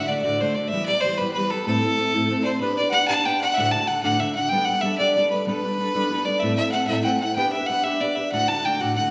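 A driving 12/8 pulse propels this wild Celtic slide, a brief cut from a longer piece, as an intense, clear bowed fiddle with light vibrato carries the melody up front over a fingerpicked steel-string acoustic guitar moving through D, Em, Am and G/B, both set in the wet reverb of a church or concert hall.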